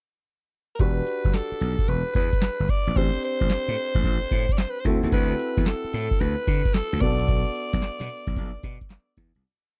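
After a brief pickup, at 0.8 seconds a booming analog drum machine with a deep kick, a crisp snare layered with handclap and metallic hi-hats drives a hard-swung new jack swing R&B groove together with a gritty, overdriven slap bass playing a bouncy, growly line with muted ghost notes and chromatic approach notes. A warm concert grand piano holds rootless chords over an Em7, Am7, D9 and Bm7 progression, while a raspy, edgy alto saxophone with light vibrato delivers a forceful, motif-based melody of call phrases until 8.9 seconds. The dry, close 1970s-style sound keeps the mood punchy and confident, with drums and bass up front, before the piece fades out from 7.3 seconds.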